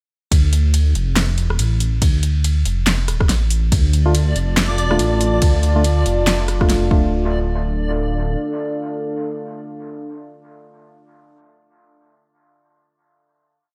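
This brooding, dark deep dubstep piece in D minor opens at 0.3 s straight into a drop at 141 BPM, with a half-time feel and swung 16ths. A rumbling, detuned sawtooth bass sits up front in chopped phrases. An electronic kick and a deep house kit carry the half-time beat, with a fat snare, metallic hats, ride, rim clicks and handclaps in a small room ambience. Around 4.1 s, sparse, hollow organ-like chord stabs arrive, gritty with vintage 12-bit sampler character, chorus and dub echo, with one shape moved in parallel. Soon after, a reversed, granular texture holds a bright high note, and a moody pad with ring modulation, chorus and its own reverb settles in. At 7.1 s the beat gives way to a final hit, and the stabs and pad linger in light digital ambience to close the piece.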